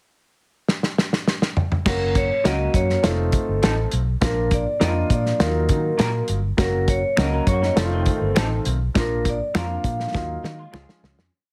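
A ringing vibraphone carries a hook-driven melody over a warm soul drum kit with the snare on all four beats, a round, foam-muted fingered bass line, woody upright piano chords, short backbeat guitar chops through a small old amp, and, from about 7.2 seconds, finger snaps and a second guitar adding chorused fills in sixths, making for a danceable, uplifting 1960s-style soul piece in F# major at 102 BPM with a heavily compressed radio sound that fades out from 9.0 seconds.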